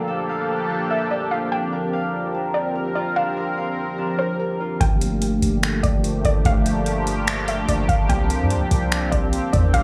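Spacious and melancholic, this atmospheric cloud-rap excerpt in half-time opens with a dark, round pluck melody carrying chorus and analog delay over a bright, detuned sawtooth pad that pumps with sidechain, while a fingerpicked concert harp rings in the background with its arpeggios until 7.1 seconds. At 4.8 seconds a booming analog drum machine arrives up front with a deep kick, metallic hi-hats and finger snaps, joined by a mellow, sine-based 808-style bass. The sound is dry and gritty with transformer saturation, a small room ambience, light reverb and digital ambience, as the chords move between Gm9 and C9sus4.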